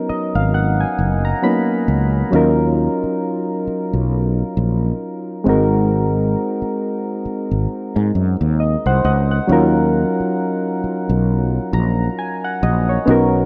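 A slow 67 BPM groove in 4/4 sways with a 16th-note swing, giving this contemporary R&B excerpt a late-night, sensual feel in E-flat minor. Soft electric-piano-like synth keys carry the accompaniment with a gentle, vintage tone, their dark, warbling chorus shimmer sitting up front and each note struck quickly before it decays. A fretless electric bass joins almost immediately, round and direct, amped and up front in the mix alongside the keys. The harmony moves from Bmaj7 to Ebm7 and then Ab7, with the keys adding fills in the opening seconds up to 2.3 s and again from 8.1 s. At 9.5 s the piece shifts into a new section, returning to Ebm7 before the cut, all wrapped in light reverb with a softened, rolled-off top end.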